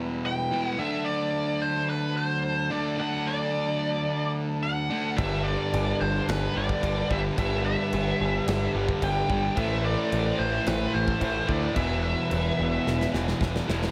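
Dark and heavy, this straight 4/4 heavy metal excerpt opens with a sludgy, overdriven rhythm guitar riffing up front beneath a nasal parked-wah lead melody and smooth bowed chamber strings holding sustained chords in the background, before a bright high-gain second guitar, a growling picked bass and a punchy modern studio kit with a pumping room sound join at 5.2 seconds, closing on a drum fill at 12.9 seconds under light reverb.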